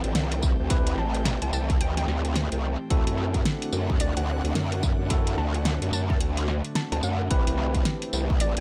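A growling, saturated bass wobbles up front in this playful, gritty glitch hop excerpt at 109 BPM in A dorian with swung 16ths, alongside a punchy electronic kick from 0.4 s, a pop kit with a fat snare, metallic hats and tambourine, bell-like electric piano stabs roughened by 12-bit sampler grit and pumping with the sidechain, a woody wave-folded pluck melody tucked in the background, a warbly lo-fi tape pad holding Am7 and D7 chords, and a very quiet airy, breathy pad, set in a fairly dry room.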